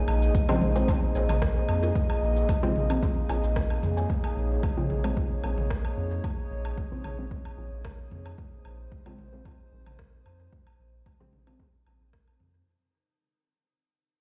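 A dark, nasal analog pad and a glassy, drifting harmonics texture open this deep, hypnotic dub techno fragment, both chorused and pumping to the sidechain, with the glass layer set bright and in the background. A round sine sub bass, an up-front overdriven kick, and overdriven electronic woodblock, toms, cabasa and rim click soon join, with dub echo trailing the woodblock, toms, cabasa and rim click. A muted, detuned sawtooth chord stab arrives at 0.5 seconds with phaser, dub echo and a filter sweep, and a very quiet second stab plays a riff higher up from 1.2 seconds, all set in stone-room reverb as if played over a big sound system in a bare space, fading out throughout.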